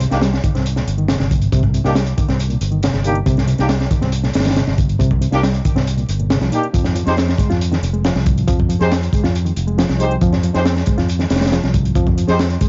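A crunchy, punchy breakbeat drum kit with a high-tuned snare drives this swaggering, gritty 138 BPM breakbeat excerpt in C minor, joined by an up-front fingered electric bass, a faint overdriven electronic hi-hat, a barky, reedy electric piano riff with fast tremolo and analog delay sitting in the background, and brass stabs under a filter sweep, all moving from Cm7 to Fm at 6.7 seconds on a dry, lo-fi recording dusted with vinyl crackle.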